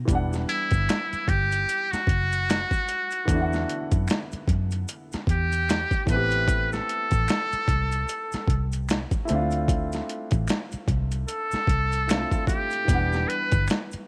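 A buzzy, metal-muted trumpet carries this introspective neo-soul and R&B passage, playing a forceful jazz-style solo with vibrato and a slapback echo from 0.5 to 13.7 seconds. Beneath it, a gritty, overdriven boom bap drum kit with a thumpy kick sits up front at a swung 75 BPM. A dark, round, foam-muted electric bass and an intimate grand piano with audible action noise move through Em9, Am9 and Dm9 in E minor, while quiet maracas and finger snaps linger in the background of this short cut from a longer piece.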